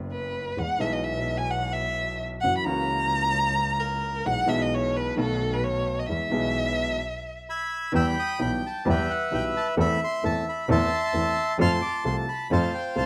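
Dry, with the open air of an outdoor recording, this dramatic, melancholic tango excerpt moves with a rubato feel as a woody upright piano and a nasal, bowed double bass support a rich, expressive violin that sings with vibrato and portamento under a slapback echo until about 7.4 seconds, when a reedy, dark bandoneon carrying its own slapback echo takes over the melody at 7.5 seconds.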